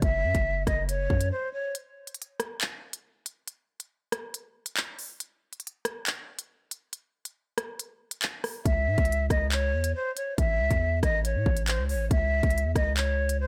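Tense and dark, this half-time drill hip hop cut moves at 139 BPM in C# harmonic minor, with a breathy, hollow jazz flute carrying the melody through a low-pass filter and a deep, sine-like 808-style bass sitting up front. Both drop out after the opening moment, leaving the electronic drum kit of hard-clipped kick, crisp hi-hats, handclaps and rim clicks, re-recorded in a large room, to run alone until flute and bass return at 8.7 seconds over C#m and A chords. Digital ambience surrounds the sound, and the recording is cut from a longer piece.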